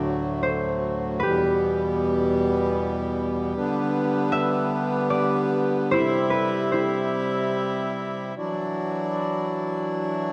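Rubato phrasing floats loosely over a 3/4 metre at about 76 BPM in this Celtic slow air, cut from a longer piece and set in D mixolydian. The mood is wistful and pastoral, with an acoustic concert harp, fingerpicked and ringing, carrying the solo line in its middle register. Beneath it, a hand-pumped harmonium holds sustained chords that sound reedy and breathing, sitting up front in the mix with a warm, low foundation. The harmony moves from D through Em, G/D and C before settling on a Dadd9. The harp stops at 9.3 seconds while the harmonium continues until 10.3 seconds, all within a moderate scoring-stage reverb.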